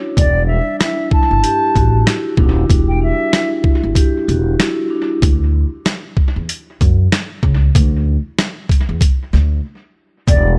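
A thumpy, pitched-down sampler-style drum kit with a medium-tuned snare drives this reflective, gritty boom-bap hip-hop excerpt at 95 BPM with swung sixteenths in E dorian over an Em9 chord, alongside a woody, growly pizzicato upright bass up front, a ringing vibraphone with cassette-tape colour and tape echo until 5.2 seconds, and a pure, distant flute with vibrato and tape echo that stops at 3.5 seconds, the two returning briefly at 10.3 seconds in a small, echo-heavy room.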